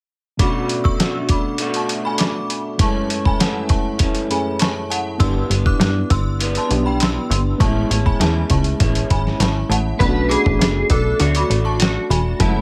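A hazy, nostalgic bedroom-pop excerpt at 100 BPM opens at 0.4 seconds with a gritty, overdriven sampler-style drum kit up front, a chiming, inharmonic synth line coloured by chorus and delay, a worn, slightly out-of-tune reed electric piano with cassette-tape colour in the background, and a slightly broken-up electric guitar through a small old amp with lush chorus and warbly pitch drift, all moving over Bm7, F#m7, Cmaj9/G and Amaj7, before a punchy, plucky analog bass joins at 5.2 seconds and a fingered electric slide guitar takes the melody at 10.0 seconds as the progression returns to Bm7.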